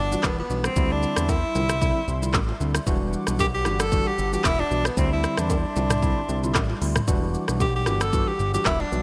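Afrobeats at 114 BPM in E minor with a mellow, hypnotic sway, this excerpt sets a breathy, close-miked tenor saxophone with vibrato and delay up front over a fat sawtooth analog bass with a filter sweep, clean tine electric piano, a hollow, flute-like pad with chorus sitting dark in the background, an electronic afro-pop kit of deep kick, smooth hats, handclaps, rim click, shaker and toms, and very quiet acoustic bongos and congas, all cycling between Em9 and D9sus4 in a bright 1980s-style digital production with light reverb.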